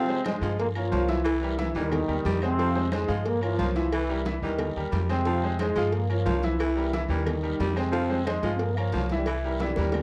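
Salsa in F minor at a brisk 180 BPM, this passionate, fiery passage is cut from a longer piece and cycles through Fm, Gm7b5, C7 and Eb with a straight 4/4 feel. A punchy, tight trombone section carries the melody from the first moment, while a breathy, gritty baritone saxophone with scooped notes supplies a second line and a brilliant grand piano with short sustain fills in the accompaniment. A growly, thumpy pizzicato upright bass joins up front at 0.4 seconds, and the percussion builds in just before it: distant congas struck with hard hands, woody claves and a raspy guiro in the background, tight high-tuned cowbell and bongos kept very quiet, and ringing, band-limited timbales with agogo bells sitting low in the mix. A drum fill closes the passage at 9.6 seconds. The horns and piano carry a cassette tape coloring, and the whole take has the feel of a home recording on cassette in a small room with moderate reverb.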